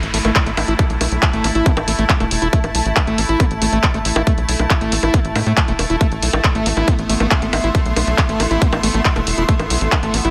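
Alien and intense, this psychedelic trance excerpt drives along at 138 BPM in a straight 4/4, centered on an A5 chord in A minor. A layered drum and bass kit of bongos, handclaps and hi-hat plays from the very start, and a punchy, tape-tinged electronic kick joins it up front at 0.4 seconds, while a tight sequencer bass built from sawtooth and square waves adds a plucky, fast-decaying pulse with a mellow edge. Behind them, a squelchy, screaming acid line cuts through with resonant filter sweeps, distortion, chorus and delay, bright yet set back in the mix. An evolving wavetable pad holds detuned, morphing chords under ensemble chorus and its own reverb, and a blurred granular cloud pad floats higher, both breathing with sidechain pumping alongside the acid line. A very quiet downlifter sinks away in the opening 2.5 seconds, and the whole passage sits in a light reverb.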